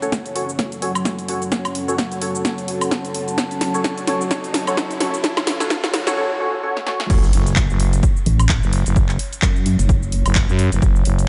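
Bass house at 129 BPM in F# minor, aggressive and bouncy with a swung 16th feel, this excerpt builds over drum fills, a very quiet riser, two deep, moody sidechain-pumped ambient pads and hollow, percussive organ stabs with 12-bit sampler grit and diffuse delay, before the drop at 7.1 seconds brings an impact, a growling, thick FM bass and, from 8.3 seconds, a pulsing, detuned, saturated wobble bass, all driven by a punchy, tape-tinged electronic kick and an up-front house kit of snare, claps, hi-hat, shaker, woodblock and crash, in a dreamy mix steeped in cathedral reverb.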